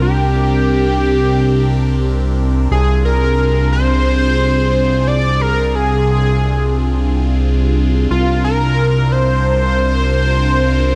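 Synthwave in free time, this short excerpt carries a cinematic, driving mood across its 11 seconds, cut from a longer piece. A bold, bright unison lead sings the melody up front between F4 and D5, its detuned sawtooth and triangle tones given vibrato, a subtle chorus and a tape echo. Beneath it, a phased analog pad holds sustained chords with a soft attack, its swirling, evolving body shaped by phaser and chorus. A fat analog bass sits prominently on a low C2, thick and mellow, with ring modulation and a filter sweep coloring its detuned sawtooth, square and triangle blend. The harmony moves over that constant C from Gm/C to Ddim/C at 2.7 seconds and settles on Bbadd9/C at 8.1 seconds, all framed by light reverb and a digital ambience.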